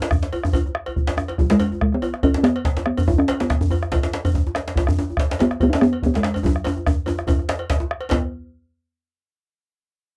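Dry and close, this 1970s-style studio recording sits in a modest booth ambience, giving the drums an earthy, festive presence. It is a short cut from a longer West African traditional piece for drum ensemble, moving in a lightly swung 4/4. The resonant talking drum carries the melody up front, joined at once by two djembes: one deep, compressed and saturated with metal rattles close at hand, the other medium-tuned and played with soft hands a little further back, also with rattles. A round bombo enters almost immediately, and a metallic cowbell chimes in softly at 0.3 seconds. Drum fills punctuate the groove near the start and again from 6.4 seconds, keeping the celebratory energy bubbling.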